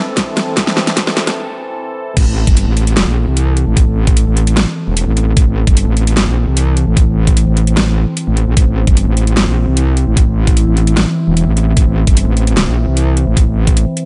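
An evolving, warbling wavetable pad opens this chaotic, aggressive slice of heavy half-time wobble dubstep, its mellow sustained chords colored by phaser and reverb and pumping to the sidechain, while a drum fill and a filter sweep build toward a brief break. At 2.2 seconds the drop hits as a saturated FM wobble bass with a metallic edge lands up front, thickened by chorus and overdrive, over a knocking, tape-warm electronic kick and a layered kit with a huge snare, crashes and metallic hats. The mix is dry, with its top end stopping at 10.7 kHz.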